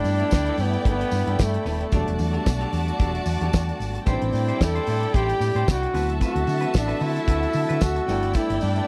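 A lightly swung sixteenth-note disco groove drives this glamorous short clip, built on a damped 70s drum kit with a fat snare and tight kick, a round, hollow-body fingered electric bass up front, and a jingly vintage tambourine in the background. A bright pop-style trombone carries the melody over a lush, bowed violin section playing a second line, while a reedy, distant string section holds sustained chords. A twangy clean electric guitar and a tine electric piano fill out the accompaniment, the piano adding a brief fill at 3.3 seconds, all in a dry, close 1970s-style studio sound.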